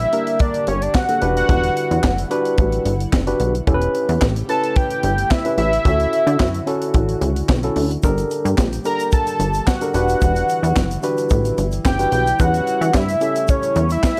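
Early-eighties boogie funk at 110 BPM in 4/4 with a danceable, smooth feel, built on a tight, dry funk kit with a high-tuned snare, handclaps and hi-hat, and a punchy, plucky analog bass whose fast-attack filter pluck sits up front beside a fat, detuned sawtooth lead carrying the melody with chorus, phaser, vibrato and slapback echo. A worn, slightly out-of-tune tine electric piano plays accompaniment, while a shimmering, retro pulse-width pad holds sustained chords in the background over a progression moving from Gm through Em9, A7/E and Dmaj9. At 8.0 seconds a grainy tube shaker joins quietly behind the groove, all set in studio reverb in this short cut from a longer piece.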